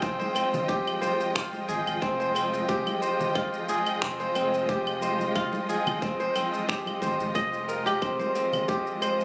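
A gently swung sixteenth-note feel in 4/4 carries this meditative, mystical organic downtempo fragment, cut from a longer piece and resting on a single Fm7 chord. A tight, overdriven electronic kick drum, re-recorded in a small room and bathed in studio reverb, anchors the groove alongside a layered, produced bed of electronic shaker, claves and finger snaps, while hard-handed acoustic congas sit in the background from 0.2 seconds. Up front, a bright, crisp fingerpicked kora rings out in arpeggios through tape echo, set against a lush bowed string section whose smooth vibrato chords sound distant and pump with sidechain. A deep, round sine sub bass sustains low in the mix and drops out at 8.2 seconds. The whole recording sits in a hall reverb and carries the compressed, roomy character of a phone capturing the sound in the room.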